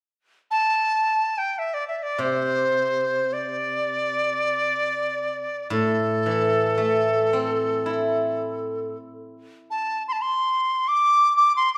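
Flowing in free time, this festive and graceful fragment of Chinese traditional chamber music is cut from a longer piece. A bamboo dizi enters at 0.5 seconds and carries the melody, its reedy, buzzing-membrane tone pure and bright, with vibrato, tongued notes and softened highs, sitting up front. At 2.2 seconds a steel-string zither joins in accompaniment, played with fingerpicks so its lower-register notes ring out silvery and close. The zither falls away at 10.0 seconds, leaving the dizi to finish the passage alone. A recital hall's generous reverb surrounds both instruments.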